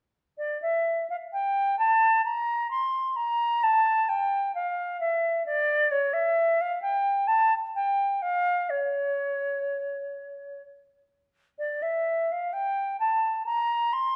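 Set in a moderate recital-hall reverb, this solemn, flowing excerpt of a baroque-style classical fantasia features a silver concert flute playing alone from 0.4 to 14.2 seconds, its pure, metallic tone shaped by expressive vibrato and a crisp attack as it moves through a rubato 3/4 at 64 BPM between C#5 and C6, tuned to A4 = 445 Hz.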